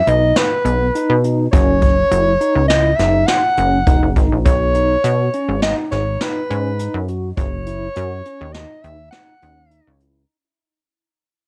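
A dry home cassette recording, cut from a longer piece, carries bright, intricate progressive band music in 5/4: an up-front mellow soprano saxophone sings the melody in a jazz style with light vibrato and subtone, a clean tine electric piano plays arpeggios through a combo amp with medium tremolo and tape echo, a punchy, funky analog bass with a sawtooth filter pluck drives the low end, and a distant, roomy brush kit with a boomy kick keeps time, before the music fades out from 4.5 seconds.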